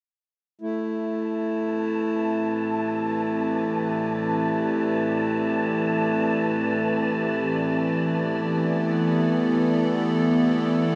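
A pedal harmonium's reedy, breathing drone opens this reflective, melancholic ambient fragment in free time and A minor, joined at 1.3 seconds by an airy, wind-like tuned noise texture with shimmer reverb and at 1.7 seconds by a morphing, detuned wavetable pad that fades in with chorus and shimmer, its sustained chords moving from Am11 to E7sus4 at 7.4 seconds inside a huge, wet reverberant space.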